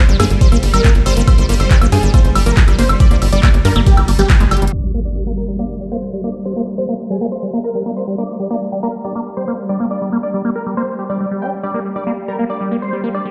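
Psychedelic trance at 139 BPM in G phrygian, alien and hypnotic, cut from a longer piece that opens on a drop: a knocking, overdriven electronic kick sits up front with a tight, punchy sequencer bass, while a bright-hatted drum kit of handclaps, hi-hat, ride and woodblock adds filtered, saturated grit beneath a squelchy, resonant acid bass riff and detuned supersaw stabs, both carrying phaser, delay and sidechain pumping. A band accent at 4.3 seconds and a drum fill lead into an electronic impact at 4.7 seconds, after which kick, kit and sequencer bass drop away and a long filter sweep carries the acid bass, the stabs and a pulsing, chorused gated texture of sustained chords. The whole mix sounds as if played through a big sound system in a bare stone room, dulled by a low-pass filter.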